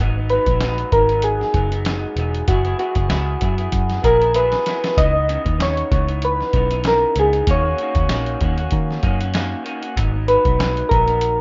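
A gently swung 4/4 groove at 96 BPM carries this lonely, hazy slice of indie and bedroom pop in C# dorian, cut from a longer piece. A dark, round, foam-muted electric bass sits up front beside a compressed, sampler-style drum kit with a thumpy kick and muffled character; the drums enter at 0.3 s and play a fill at 4.4 s. An electric guitar through a small old amp supplies slightly broken-up, lo-fi accompaniment, touched by subtle chorus and vibrato. Over it, soft electric-piano-like synth keys carry the melody with a mellow, warbling tone and lush chorus. The chords move from G#m7 through F#9sus4, C#m9 and D#m7 before returning to G#m7, set in a rough home-demo mix with moderate studio reverb and a dulled top end.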